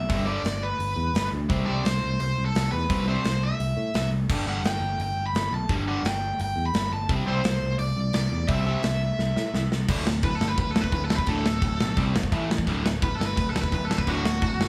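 Punk rock at 172 BPM in 4/4, upbeat and energetic, centred on D mixolydian and cut from a longer piece. For the first 9.9 seconds the band sits in a half-time feel over G and C chords, with a double-tracked, distorted electric guitar riff grinding low beneath an overdriven lead guitar carrying the melody. A growly picked bass, direct and amped, anchors the bottom, while a big acoustic rock kit with a punchy kick, medium-tuned snare, hi-hat and bright crash cymbals drives everything forward. A drum fill at 9.2 seconds launches the lead guitar into a solo from 9.9 seconds, as the chords shift through D5, C5 and A5 to D. The sound is dry and close, with little reverb and a small room ambience, and every part is placed up front.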